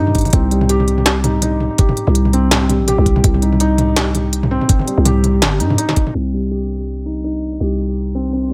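A growling, buzzy 808-style bass with tube saturation anchors this heavy, dark half-time drum and bass passage at 165 BPM, cut from a longer piece, with swung 16ths over a C5 chord. A felt-muted upright piano plays intimate, mellow arpeggios with audible action noise, vintage 12-bit sampler grit and dub echo. A knocking electronic kick and an industrial kit of clanging snare, crisp hats and toms drive the drop until 6.1 seconds, after which a filter sweep on the piano carries the dry, low-passed mix to its end at 8.5 seconds.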